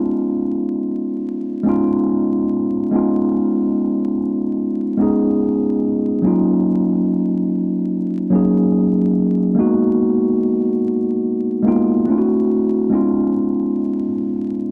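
A dark, warm production wraps this short passage in vinyl crackle and a long, wet plate reverb whose tail lingers for about 2.9 seconds. It is a reflective, nostalgic hip hop fragment in 4/4 with a lazy swing on the sixteenths, taken from a longer piece. A mellow tine electric piano plays solo throughout, sitting up front with a clean, warm tone that comes through its built-in speakers and is softened by a low-pass filter. The harmony drifts from Db7 to Ebm7 and Abm7, then passes briefly through D9 before settling back on Db7 near 12.9 seconds. The result feels intimate and wistful, like a late-night memory replayed on an old record.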